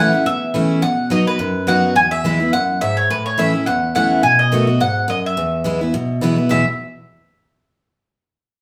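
A woody, double-strung mandolin carries the melody up front while a bright, full-bodied dreadnought guitar picks the accompaniment beside it in this driving, joyful bluegrass excerpt at 212 BPM in E major, swinging lightly through A, B, E, A, B7 and E as the two players share one room in a large, reverberant studio before both stop by 6.7 seconds.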